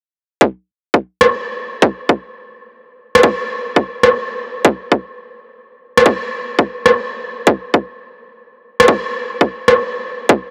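The recording has a gritty, hardware-made grain with a cassette-tape character, set inside a moderate but huge ambient reverb whose long tail lends the short excerpt a cinematic, spacious mood. It is half-time drum and bass at 170 BPM in 4/4, with a slight swing on the sixteenths and the half-time feel the style is known for. The electronic kick drum opens at 0.4 s and sits up front: hard-clipped, high-pass filtered and tape-warm, it carries the most weight in the mix. An electronic rim click joins at 1.2 s, also up front and produced, its tone coloured by tape and by being re-recorded in a small room. The two drum parts carry the whole passage until the click drops away at 9.7 s, just before the kick, closing a groove taken from a longer piece.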